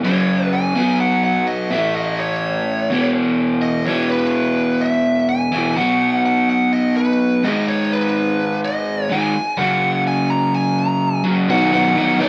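A crunchy, bright overdriven guitar sits up front, double-tracked and picked as it drives a riff through this confident, sunny rock excerpt at 126 BPM in a straight 4/4. Above it, a biting lead guitar with a warm overdriven tone plays a picked melody from start to finish at 12.3 seconds, over chords that move from F#5 through B5, A and E5 before settling on G#m, F# and finally B at 11.5 seconds. The sound carries light digital reverb and a faint mains hum.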